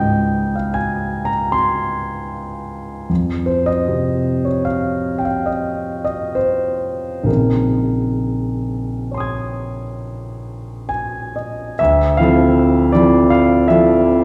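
The recording places a concert grand in a wet recital hall whose 1.6-second reverb tail gives the sense of listening from further back in the room, even as the piano itself sounds present and up front. This is a short excerpt of impressionist classical solo piano in Bb minor, tuned to A4 = 438 Hz, unfolding in a rubato 5/4 between 64 and 80 BPM with a nocturnal, mysterious mood. The instrument is warm, intimate and polished, with deep bass, long sustain and audible action noise, and it ranges from Bb1 up to Ab6. A Db5 opens the passage, an F5 follows at 3.1 seconds, and a Bbm11 harmony arrives at 7.3 seconds. At 11.8 seconds the music shifts into a new section on a Dm9 chord before the passage breaks off at 14.2 seconds.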